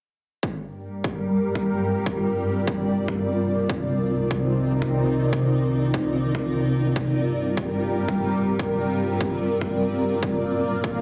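A lush, thick unison pad leads this heavy, aggressive slice of half-time wobble dubstep, its detuned sawtooth and square-wave layers with a sub octave swelling in slowly, bright and up front under chorus and phaser and pumping against the sidechain. Underneath, a punchy, layered electronic kick plays at 147 BPM in 4/4, re-recorded in a large room and high-pass filtered on both the drum and its room sound. From 0.9 seconds a granular cloud pad joins, its blurred, evolving triangle tones carrying a moving notch and their own reverb, also pumping with the sidechain. The harmony moves through G minor, C minor add 9, back to G minor and on to B-flat, with both pads sustaining long releases. A moderate hall reverb surrounds the parts, and the master is dense and heavily limited in a modern style, in a cut taken from a longer piece.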